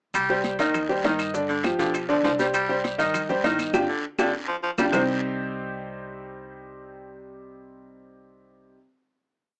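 A two-bar clave line drives this short, fiery salsa vamp, with bongos in steady eighths, slapped congas, ringing metal-shell timbales, raspy guiro and grainy maracas set back in the mix, while a thumpy gut-string upright bass plays a tumbao that anticipates the chords. Up front, a gritty, forceful baritone saxophone repeats a punchy ostinato with vibrato, and a brilliant, worn grand piano plays a montuno in octaves through a plate reverb, both carrying the colour of cassette tape. After a band accent and drum fill, everyone lands on a final chord at 4.9 seconds, and the piano and bass ring on until 8.8 seconds in a damp little booth that sounds as if it is heard through a small speaker.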